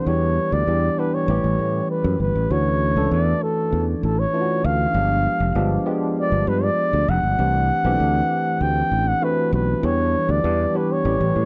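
A dry, close studio sound in the 1970s manner frames this upbeat, glossy slice of polished 1980s jazz-funk pop in a straight four. A breathy flugelhorn carries the melody up front with a soft attack, mellow vibrato and an intimate, whispered pop-solo feel, while a clean tine electric piano treated with analog chorus supplies the chords, moving from Em7 and A7 through Dmaj9, G7b9 and C69. Underneath, a growly, punchy fingered electric bass sits bright and direct in the mix.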